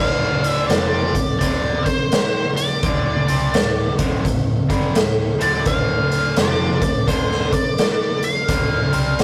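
A raw garage drum kit sits up front with a punchy kick, medium-tuned snare and hi-hat, its saturated, gritty sound ringing in a bright stone room as it enters at 0.4 s in this brooding blues rock and southern rock fragment at 85 BPM with a swung 4/4 feel in D minor. A dark octave-fuzz lead guitar carries the melody through wah and distortion, over a bright, double-tracked overdriven guitar riff and a round, foam-muted picked bass kept in the background. The whole passage holds on a single D minor chord, captured as a rough rehearsal-room recording with moderate booth ambience and warm saturation.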